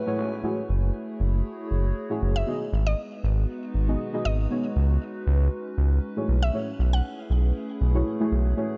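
This dry, close-sounding excerpt from a longer deep house track has its highest frequencies rolled off, and it moves at 118 BPM in 4/4 with a light sixteenth-note swing in F# dorian. A warbly, tape-like pad holds sustained, detuned chords in the background, lo-fi and nostalgic, colored by chorus, phaser and its own reverb. A deep, mellow chord stab sits up front with chorus, phaser and tape echo, while a round analog bass, high-pass filtered and evolving, anchors the low end from 0.2 seconds as the harmony moves through F#m9, G#m7, C#9sus4 and B13sus4. From 2.4 to 7.4 seconds a woody, mallet-like synth pluck adds a short, percussive melody high in register, with chorus and tape echo around it. The mood is hypnotic and warm throughout.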